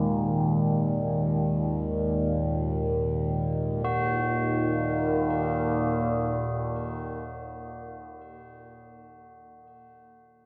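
Free-time dark ambient drone in Eb minor, unsettling and dark, cut from a longer piece, where a resonant sawtooth-and-sine drone with moving overtones sits up front with chorus, phaser and its own reverb beneath a deep, detuned analog pad holding sustained chords from an Ab5/Eb shading to Ebm, joined at 3.8 seconds by solemn, metallic tubular bells with delayed arpeggios on Gb4 that keep ringing to 10.2 seconds in a cavernous cathedral reverb.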